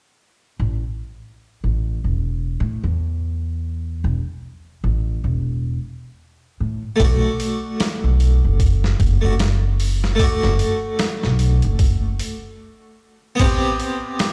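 Heard through a big sound system in a bare, stone-walled room, this smoky, brooding trip hop fragment in A dorian moves at 75 BPM with a swung 16th-note feel. A woody pizzicato upright bass opens alone at 0.6 seconds over A5, and at 7.0 seconds a gritty, pitched-down boom bap drum kit with a thumpy kick enters together with an airy French-style harpsichord, colored by tremolo and tape echo, as the harmony shifts to Bm7. All three parts sit up front before a stop at 12.6 seconds, after which the music lands on Am9.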